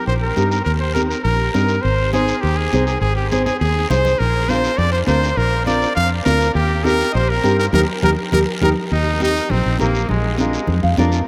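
A punchy, close-miked trumpet leads this festive, sunny cumbia in a pop style, carrying the solo melody up front from the very start. Beneath it, a round, foam-muted fingered electric bass sits equally forward with a dark, direct tone. Ringing, high-tuned congas played with hard hands and a raspy guiro keep a close, dry pulse in the background, while a fingerpicked nylon-string guitar adds warm, deep classical accompaniment and steps out with a short fill at 10.7 seconds. The band hits a collective accent from 7.7 to 8.9 seconds just before the music moves into a new section. A huge, wet reverb places the ensemble in a vast, echoing space, and this clip is cut from a longer piece.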